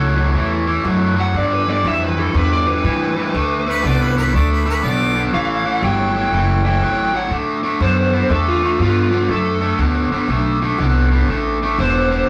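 A cranked stack guitar drives this gritty, swaggering electric blues shuffle, its bright, overdriven picked riff sitting up front with a touch of spring reverb. Upright bass plays under it from the start, its gut strings giving a woody, thumpy pizzicato bottom. At 1.2 seconds a smooth overdriven lead guitar enters with a darker, picked melody set a little further back. Between 3.7 and 5.2 seconds a clear harmonica adds a brief jazz-style second line with vibrato, scooped notes and slapback echo. The groove swings in 4/4 at 121 BPM in D mixolydian, moving through chords like A6, G13 and D69, and the whole cut, taken from a longer piece, has the rough, saturated feel of a rehearsal-room recording in a small room.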